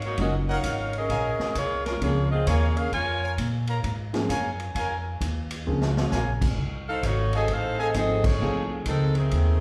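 Big band swing in Bb minor at 131 BPM, brassy and sultry, with an up-front edgy saxophone section carrying the melody over woody pizzicato upright bass, a warm upright piano, clear trumpet stabs and a roomy, distant drum kit with dark cymbals, all set back in a wet studio reverb, with a drum fill at 5.7 seconds, the saxes returning at 6.9 seconds and a band accent at 8.2 seconds in this cut from a longer piece.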